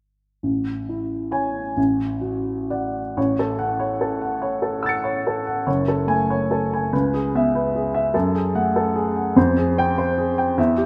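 Dreamy and luminous, this brief excerpt from a longer impressionist solo piano piece drifts in 6/8 at a slow, rubato pace of roughly 39-50 BPM counted in dotted quarters. A baby grand piano carries everything alone from 0.4 to 10.9 seconds, its open, long-sustaining tone sitting up front and reaching from F#1 in the deep bass to C#7 at the top. The opening passage rests on Amaj7 and D/A before shifting at 3.2 seconds into a second section that moves through A6, F#madd9, C#m7 and back to F#madd9. A striking turn to Fmadd9 at 9.4 seconds lends a shadowed, unexpected color near the close. The piano rings inside a moderate scoring-stage reverb whose 1.6-second tail adds a soft, airy halo around each chord.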